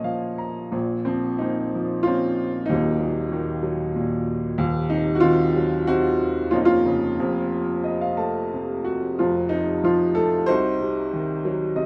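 A boxy, up-front baby grand piano sits in light reverb, giving this short passage cut from a longer classical piece a close, intimate sound with a cool, bittersweet mood. Played solo in 3/4 at roughly 86-96 BPM with a rubato feel, the lyrical piano moves through Bb harmonic minor, tuned to A4 = 441 Hz, reaching from the deep bass up to Bb5. Brief fills open the passage and return around 7.5 s and 11.4 s, while the harmony drifts from Bbm and Ebm through diminished colours to F before settling on Cdim.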